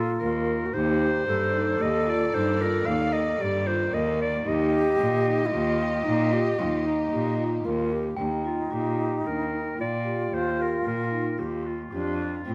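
Contemporary chamber music in 7/4 at 113 BPM, set in Eb lydian with a playful, hopeful mood, this excerpt features a breathy, up-front clarinet carrying the melody with scooped notes and jazz-style vibrato, while a pure alto flute plays a second line and a mellow vibraphone struck with soft mallets ripples through arpeggios. A rich, nasal bowed cello anchors the bass, and a distant, lush string section holds sustained chords from 0.7 to 8.2 seconds under light reverb. As the passage moves into a new section at 8.2 seconds, a bell-like glockenspiel rings a G5 in the background.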